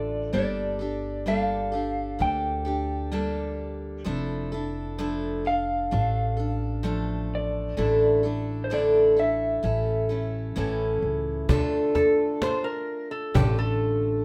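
Acoustic folk for a duo or small band, reflective and melancholic, moving at an unhurried pace in a straight four-beat feel, cut from a longer piece. A bright, picked steel-string acoustic guitar sits up front with audible finger squeak and an auditorium-sized body, while a pizzicato upright bass on steel strings adds a dark, woody foundation. Above them, an electric guitar through a small old amp carries the melody with a slightly broken-up, compressed, lo-fi tone and tremolo, until it stops at 10.5 seconds. The chords move from Gmadd9 through Dmadd9/F and Asus4 to A, then settle on Dm as a new section begins at 11.5 seconds, where a cajon with hard hands and faint snares enters in a live room. A metal-body resonator guitar, played with fingerpicks and a steel bar, joins at 11.9 seconds with a metallic, nasal slide solo, all under light reverb.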